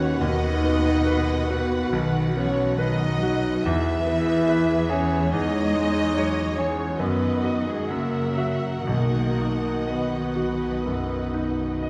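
A bright, brilliant concert grand piano leads this lyrical, lush romantic movement for piano and orchestra, carrying the melody from a deep bass B1 up to E5 and sitting up front in the mix. Set in B major in 4/4 with a rubato feel hovering between 59 and 73 BPM, the passage is cut from a longer piece and moves through B/D#, B, E and C#m/E before B/F# and F#7 resolve to B at 8.9 seconds. A violin section also carries the melody with expressive vibrato, while a second violin section traces a smooth, even second line, and a mellow French horn section holds tight sustained chords. Beneath them, a dark viola section with portamento, a cello section and a distant double bass section fill out the accompaniment and bass in the background. Round, soft-mallet timpani strokes on B2 arrive from 8.9 to 10.3 seconds, and the whole is set in a moderate concert hall reverb with a dark, warm production.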